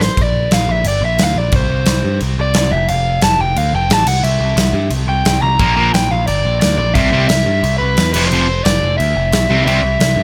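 A crunchy overdriven guitar carries the melody with a touch of delay through this upbeat, rowdy punk rock excerpt, riding over a growling, bright bass and a big rock drum kit that opens with a fill before settling into a half-time feel with punchy kick and bright cymbals. At 5.6 seconds a double-tracked, distorted electric guitar riff crashes in up front, thickening the Bb, C and F chord changes until 9.8 seconds. The dry, close sound keeps every part in your face.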